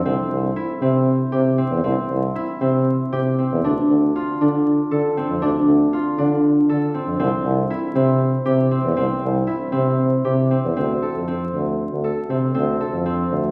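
Moving in a straight 7/8 at 236 eighth-note beats per minute, this hypnotic, pensive stretch of contemporary chamber music in D minor, cut from a longer piece, sets ringing, fingerpicked concert harp arpeggios up front over a clear tuba bass line played in a jazz style with light vibrato, soft attacks and scooped notes, the pair circling C and D minor chords before settling on Dm7 at 10.8 seconds inside a wet recital hall reverb with a layer of vinyl crackle.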